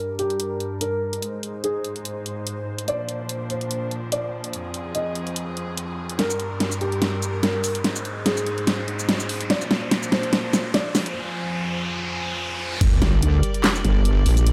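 Swung sixteenths at 145 BPM in 4/4 drive this heavy wobble dubstep excerpt with a half-time feel, menacing and chaotic in G phrygian. A soft, felt-muted upright piano carries a dark, boxy melody through tape echo. Beneath it, bowed chamber strings hold earthy, smooth-topped chords that pump against a sidechain and pass through a low-pass filter sweep across the build-up. An electronic riser climbs and a sub drop lands, while an up-front dubstep drum kit, re-recorded in a small room, hits with a huge snare, handclaps, hi-hat, shaker and crash and plays a fill before the piano stops at 11.2 seconds for a brief break. At 12.8 seconds the drop arrives with a knocking, layered electronic kick and a saturated, detuned wobble bass of sawtooth and sine, thickened with chorus and overdrive. The chords circle Gm, Ab, Bbadd9 and Fm under light reverb, and the piece is cut off shortly into the drop.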